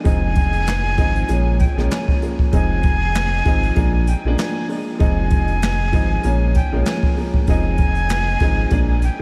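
A reflective, gritty boom-bap hip-hop excerpt with a light swing, where a woody, slightly detuned upright piano with long sustain opens at 0.0 s and carries the Fm7 to Bbm7 changes beneath a breathy, straight-toned jazz flute melody colored by analog delay, while a deep sine-and-triangle sub bass with an octave and an acoustic brush kit with a boomy kick, hi-hat, snare and handclaps ride high in the mix under light studio reverb and vinyl crackle.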